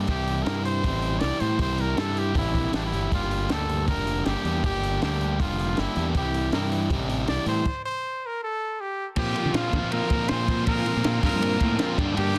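Moody and bittersweet, this indie rock excerpt moves at 158 BPM in a straight 4/4. A crunchy, up-front overdriven guitar riff and a growling, punchy fingered electric bass with overdrive sit under a clear, close-miked trumpet melody with light vibrato, while a compact cocktail drum kit adds a high-tuned snare and a dark, rolled-off top. After a stop from 7.7 to 9.2 seconds, a new section over a Bbsus2 chord brings in a very quiet, shimmering vintage string machine of violins and a second, biting guitar riff with analog chorus set in the background, all wrapped in light reverb and a dense, heavily limited modern master.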